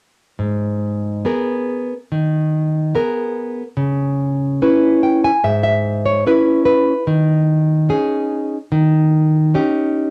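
A bright, fingerpicked nylon-string guitar sits up front with audible finger squeak, carrying a mournful, longing fado accompaniment in loose rubato through G#madd9, C#m7 and D#7sus4 to D#7, adding a fill at 4.6 s, all heard through cassette-tape coloring in a wet, close booth ambience that gives this short cut from a longer home recording an intimate feel.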